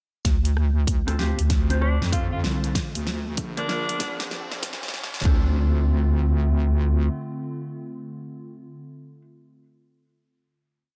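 A swung 96 BPM glitch hop groove in 4/4 and D minor opens the piece, with a punchy, layered electronic kick and a pop kit of closed hat, rim click and fat snare playing a swung beat with edits until about 5.3 seconds. Underneath, a heavy, saturated wobble bass with chorus sits up front, its modulated phrases changing wobble speed from 0.2 to 7.1 seconds. A dark, clean electric guitar plays syncopated, closely voiced chord stabs in the background, low-pass filtered with sidechain pumping and a diffuse ambient delay. A bright, vintage tenor saxophone with vibrato offers short, forceful jazz phrases from 1.8 to 4.2 seconds. A nostalgic, lo-fi pad of detuned, wave-folded tones pumps beneath it all, while a background riser, a drum fill and a filter sweep drive the build over Dm7 and Bb toward a final Dm7 chord at 5.3 seconds, where the pad and guitar ring on in a playful, funky close.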